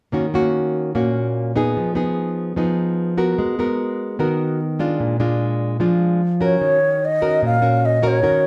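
A melancholic, intimate bossa nova fragment in Eb minor at 148 BPM, where a warm, fingerpicked classical nylon-string guitar sits up front with audible finger squeak, carrying the chords Ebm7, Fm7b5, Abm9 and Bb7, before a breathy, close-miked bass bansuri with vibrato, a crisp attack and an expressive bamboo tone enters at 6.4 s, its line bathed in plate reverb, all within a reverberant studio heard from further back in the room.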